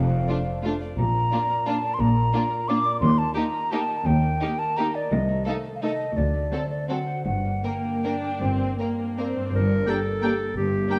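Bittersweet and sweeping, this classical passage in three moves with a flexible, rubato feel, set in moderate scoring-stage reverb with a dark production. A hollow, pure silver concert flute sits up front with a tongued second line, while a bright concert harp rings out fingerpicked arpeggios across a broad span. Bowed strings carry the body of the music: a violin section sings the melody with vibrato as another violin line lies in the background, a focused viola section supplies accompaniment, and a clear, distant cello section joins an expressive, close double bass section on the bass. At 9.5 seconds, as a new section begins, a solo clarinet steps forward with its own second line. From 9.9 seconds a smooth-topped cor anglais adds a further line from the background, and a mellow French horn section with light vibrato holds sustained chords before the excerpt is cut off.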